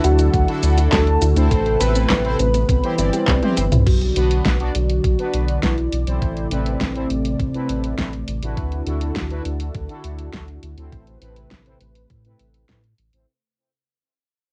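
A round, deep analog bass sits up front and carries this nocturnal, driving synthwave excerpt, anchoring a straight 4/4 groove beneath a thumpy electronic kick in the background and a layered pop drum kit with a fat snare, handclaps, shaker, toms and crash. A soft, octave-layered synth lead with chorus, phaser and analog delay sings the melody until about 8.5 seconds, while a smooth, detuned analog pad holds sustained chords with sidechain pumping throughout. In the opening seconds a dreamy FM electric piano with tremolo and tape echo adds a second line, and a very quiet, gentle pluck traces arpeggios. Bold, brassy synth stabs with a bright, wave-folded edge cut through from 0.5 seconds on. A drum fill at 3.3 seconds leads into a second section where a filter sweep on the polysynth unfolds over a long fade-out, as the chords move from Bm through Amadd9 and back to Dadd9. The whole has the light reverb and hazy softness of a home cassette recording.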